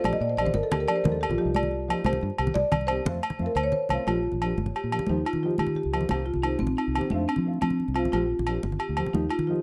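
A moderate studio reverb surrounds this joyful highlife guitar band excerpt in Bb major, moving at 119 BPM in a straight 12/8 feel. Mellow, woody marimba arpeggios played with soft mallets on rosewood bars carry a tape echo and take a solo through the opening 4.1 seconds, leading to a drum fill at 3.4 seconds. Beneath them, a dark, full-bodied nylon-string guitar is thumb-plucked with audible finger squeak, a round, foam-muted fingered electric bass sits up front, thick-skinned, damped congas are struck with soft hands, and agogo bells ring close and dry over a cycle of Bb6, Ebadd9, Cm7 and F.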